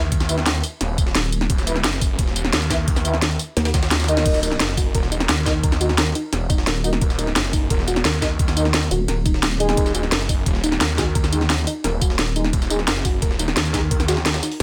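Dark technical drum and bass with an aggressive, mechanical drive, built on a growling, detuned saw bass with sidechain pumping, an overdriven knocking kick, a cracking kit with bright hats, a very quiet gritty pitched-up jungle break, mellow brass stabs trailing dub echo, a nasal vowel-sweep wobble bass that surfaces in short bursts, and a soft, round pluck arpeggio entering at 4.4 seconds, all set in a digital ambience.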